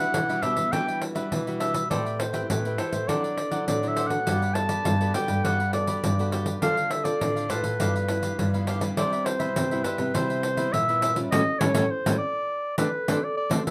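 Samba and choro at 102 BPM in D major, sunny and joyful, with a warm, up-front solo clarinet carrying the melody over mellow, crisp picked cavaquinho, a small fingerpicked nylon-string guitar in the background, a thumb-plucked nylon-string guitar with fresh strings and finger squeak holding the bass, and a jingly, up-front pandeiro, all in a small room, with a band accent arriving at 11.3 seconds in this short cut from a longer piece.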